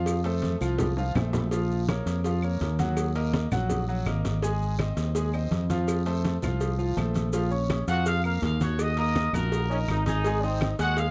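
A punchy, dark fingered electric bass sits up front in this fiery, danceable salsa clip, cut from a longer piece, with a bright, polished concert grand piano with long sustain playing accompaniment above it. Round, low-tuned cowbell and bongos join ringing congas, woody claves, a raspy guiro and grainy maracas, the latter four sitting in the background, all in a dry, close 1970s-style studio sound. A tight trumpet section with vibrato takes the melody at 7.9 seconds, and a brilliant trombone section adds a brief second line at 9.7 seconds.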